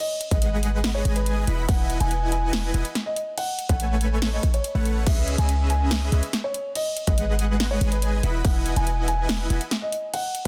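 A boomy 808-style bass with a fast attack and a punchy, up-front electronic kick anchor this playful, bright half-time future bass fragment, where a huge, detuned supersaw riff with vibrato and sidechain pumping joins just after the start alongside a dark, mellow concert grand piano melody roughened by vintage 12-bit sampler grit and tape echo, while a big-room dance kit adds crash, metallic hi-hats and a layered snare over lush seventh and ninth chords in a dry, heavily limited mix.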